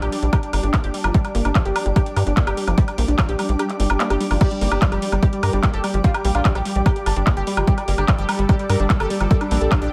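Hypnotic and psychedelic, this excerpt from a longer psychedelic trance piece runs at 147 BPM in a straight 4/4, centred on G minor. A tight, driving sequencer bass with a wave-folded, moving-notch character sits up front beside a punchy, layered electronic kick, while a techno drum kit adds metallic hi-hats, handclaps, woodblock and crash cymbal. A lush, detuned unison pluck carries the riff through sidechain pumping and dub echo, and in the background a bubbling stepped-filter texture holds resonant chords with chorus as a blurred granular cloud pad drifts high above, both breathing with the sidechain. The kick drops out from 3.6 to 4.4 seconds as a very quiet electronic swell sounds, leading into the drop at 4.4 seconds. There a gritty, screaming overdriven synth lead enters with a guitar-like bite, vibrato, phaser and dub echo, riding the pumping groove in a light digital ambience.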